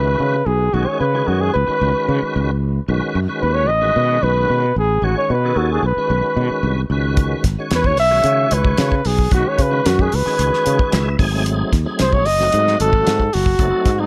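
At a straight 112 BPM in 4/4, this funky, slick electric jazz fusion excerpt rides on a growly, punchy fretless bass that sits up front and sustains its notes from the first second. A tonewheel organ fills out the harmony with a full, lightly overdriven tone, colored by chorus vibrato, a slow rotary speaker and plate reverb, and it slips in a short fill at 10.7 seconds. Over this, a trumpet with a bucket mute carries the solo melody in a dark, veiled jazz voice, with light vibrato, scooped notes and a smooth top, set in its own plate reverb. The damped 70s drum kit arrives at 7.2 seconds, bringing a fat snare, tight kick and hi-hat in a dry, rolled-off sound close to the listener. The harmony moves from C#7(no3) through B9 and C#m7 to a tense G#7b9, all within a light overall reverb.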